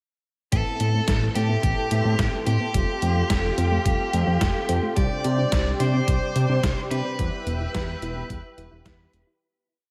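Soaked in lush hall reverb, this dreamy, moody and nocturnal synthwave piece in A minor moves at 108 BPM, with a smooth overdriven electric guitar playing a repeating riff melody over a mellow, detuned, sidechain-pumped analog pad, a soft round pluck arpeggio under a filter sweep, dark brassy synth stabs with vibrato, a fat nasal octave-jumping bass up front, a thumpy electronic kick and a tape-coloured 8-bit drum machine backbeat of closed hi-hat and snare, before fading out from 6.4 seconds.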